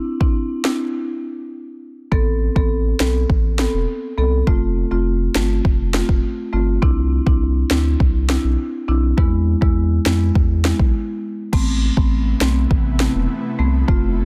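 An up-front electronic drum kit with a deep kick, sharp snare and crash cymbal drives this hypnotic, sultry dancehall cut, taken from a longer piece and set in a straight 4/4. A woody marimba played with medium mallets on rosewood bars carries the accompaniment from the start, joined at 2.1 seconds by a round, sine-like sub bass that is deep and sustained. The chords move from Cadd9 through Amadd9, F, Cadd9 again and E before returning to Amadd9, with brief breaks opening the track and arriving again just before the closing section. At 11.9 seconds an ethereal, airy pad enters low in the mix with slow-attack sustained chords, its detuned unison voices thickened by ensemble chorus, built-in reverb and sidechain pumping. The overall sound is dry, dense and heavily limited in a modern style.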